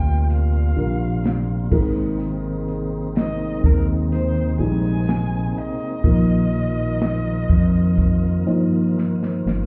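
A slow, straight 4/4 pulse carries this melancholic, heartbroken pop ballad, cut from a longer piece. A polished acoustic country kit joins at 0.3 s with a punchy kick, a medium-tuned snare, hi-hat and crash cymbal, and it closes on a drum fill from 9.0 s. Beneath it, a dark, round fretless electric bass sits up front, while a felt-muted upright piano supplies soft, boxy accompaniment with audible action noise. A full tonewheel organ holds sustained chords, lightly overdriven, with key click and a fast-spinning rotary speaker. A single bowed violin sings the focused, vibrato-laden melody until 9.0 s, over harmony moving from Gm7 to Abadd9 and then Bbsus4. The whole mix sounds muffled, as if heard through a wall, and is bathed in club reverb.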